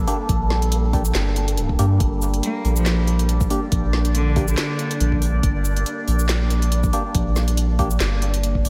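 Set in a light digital ambience, this heavy, meditative deep dubstep excerpt moves at a swung half-time feel over a round, up-front sub bass and a resonant drone whose overtones shift beneath a chorus shimmer. Hollow, nasal organ stabs with dub echo punctuate the bar, while a dark, breathy wind-like texture hovers in the background and a deep electronic kick anchors a kit of woody snare, handclaps, shaker and smooth hi-hats. From 2.4 to 5.1 seconds a single cello adds a biting, earthy line with light vibrato and an airy bow, trailed by dub echo.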